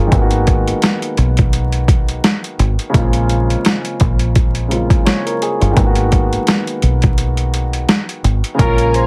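A gritty, overdriven sampler-style drum kit sits up front in this tough, reflective boom-bap hip-hop excerpt, its thumpy kick, medium-tuned snare and hi-hat carrying a swung 16th-note feel with the compressed grit of a re-recording in a small room. A deep, round, foam-muted electric bass shares the foreground, while a dark, mellow baby grand piano plays accompaniment through cassette-tape coloring, filtering and plate reverb. The harmony moves from Abm9 to Bbm9 and back to Abm9, and a break arrives at 7.2 seconds. At 8.6 seconds a ringing, metallic vibraphone struck with soft mallets takes the melody, joined by lush, bowed strings in the background and brief, vintage jazz-style horn stabs with light vibrato. The whole mix carries a heavily compressed radio sound and vinyl crackle, with little room reverb.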